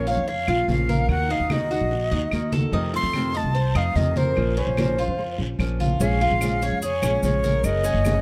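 A breathy, bright concert flute carries the melody up front, its vibrato, crisp attack and reedy edge sitting close to the ear in this short cut from a longer Cuban son and guajira piece in Bb minor. The mood is sultry and nostalgic, moving at 147 BPM in a straight 4/4 over a progression that runs from Bbm through Ebm and F7 to a closing Gb. Just as prominent, a growly, thumpy pizzicato upright bass with steel strings anchors the low end, while a fingerpicked flamenco guitar with fresh strings and audible finger squeak supplies accompaniment. A picked Cuban tres adds metallic arpeggios from its double, partly octave-doubled strings. In the background, low-tuned thick-skinned congas sound distant in a large room, woody claves enter at 0.5 s, and a raspy, compressed, saturated guiro scrapes along, with grainy, mellow maracas joining at 6.0 s. The sound is dry, with little reverb.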